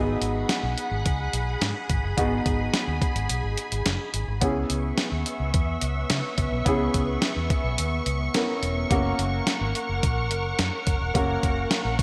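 Dramatic and urgent, this 1980s-style pop excerpt moves in a straight 4/4 over G#m7, C#m7 and F# chords, with a baby grand piano giving open accompaniment through a lush chorus while a silky, warbling string machine holds slow-attack sustained chords under an ensemble chorus. A dark, foam-muted fingered electric bass sits round and punchy up front, and a clean 12-bit drum machine enters at 0.2 seconds with a thumpy kick, medium-tuned snare and hi-hat, sampler-style and re-recorded in a small room. A moderate plate reverb and bright digital production frame the whole passage.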